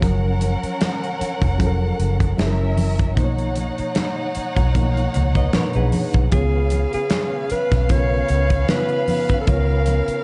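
A mellow alto saxophone takes the melody from 6.3 seconds, up front with vibrato, breathy subtone and scooped notes, over a lush, romantic 1970s-style soul groove at 76 BPM in F# major, with a lilting 16th-note swing and a tuning slightly below standard. Underneath, a round, foam-muted fingered bass sits forward beside a punchy acoustic drum kit and very quiet congas, while a reedy, worn electric piano with light overdrive and fast tremolo comps through chords moving from F#maj7 to Bmaj9#11 and C#7, and a rich bowed violin section adds an expressive second line. A clean semi-hollow guitar riff slips in briefly at 5.4 seconds, all within a dark, softly reverberant production cut from a longer piece.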